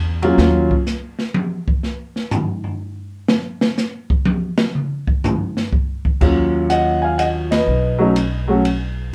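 This moody, smoky jazz piano trio fragment in Eb minor opens with woody pizzicato upright bass and a natural-sounding grand piano on an Ebm9 chord, swinging in 3/4 at 124 BPM before both drop out at 0.7 seconds. The acoustic drum kit, with its dark cymbals, medium-tuned snare and boomy kick, then carries a solo until bass and piano return at 6.2 seconds, and the band hits an accent at 7.4 seconds, shortly before the harmony moves to B at 7.7 seconds. The three players sit up front within a short club reverb, heard from further back in the room.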